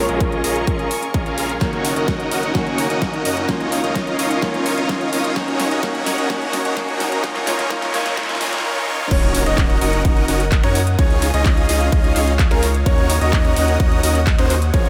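A euphoric, emotional progressive house build-up at 128 BPM in 4/4 opens with a huge, bright, detuned supersaw riff up front over a deep saturated sub bass, a lush chorused and phased pad, and a boxy picked acoustic guitar in the background, each pumping with the sidechain, as a punchy overdriven electronic kick and a big-room kit of huge snare, metallic hats, crash, finger snaps and handclaps come in, soon followed by a very quiet riser and noise sweep through a filter sweep and drum fill; the guitar stops at 8.6 s, and at the drop at 9.1 s an impact lands while a dark, mellow baby grand piano takes up arpeggios over the Gb6, Dbadd9 and Ebm7 chords, all in a dreamy mix soaked in reverb.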